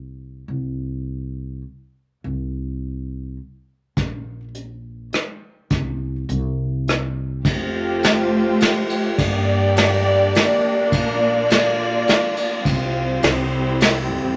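A woody, pizzicato upright bass opens this hopeful, nostalgic acoustic folk-pop ballad in a lilting 3/4, sitting up front with a dark, steel-strung tone. At 4.0 seconds a vintage drum kit played with brushes joins, its punchy kick, medium-tuned snare, rim click, hi-hat and dark ride giving a warm, rolled-off sway. At 7.4 seconds, as the second section begins, a chamber string section enters with bowed, sustained chords, expressive vibrato and a smooth top. The harmony moves from Fadd9 through Gm and Bb to a Csus4 that settles onto C. A short club reverb lends the close, studio-room sound a touch of space in this excerpt cut from a longer piece.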